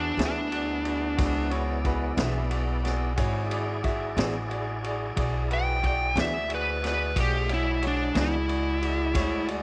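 A soulful, gritty slow blues in 12/8 at 60 BPM opens at once with a dark, overdriven lead guitar soloing up front over a bright, polished concert grand piano, a lightly overdriven tonewheel organ holding sustained chords through a slow rotary speaker with chorus vibrato, and a woody pizzicato upright bass. At 0.2 seconds a vintage drum kit joins with a punchy kick, medium-tuned snare and dark ride cymbal, its sound rolled off at the top, alongside a background electric guitar at the edge of break-up, its picked accompaniment pulsing through tremolo. The feel is straight and unhurried, sitting on an E7 chord in E mixolydian, with the picked lead ranging from D4 to G5 and carrying the melody throughout. The piano adds present, brilliant accompaniment, while the organ's full body and the bass's steel-string thump fill out the studio room. The tremolo guitar drops out at 8.4 seconds, and this cut from a longer piece ends at 9.6 seconds.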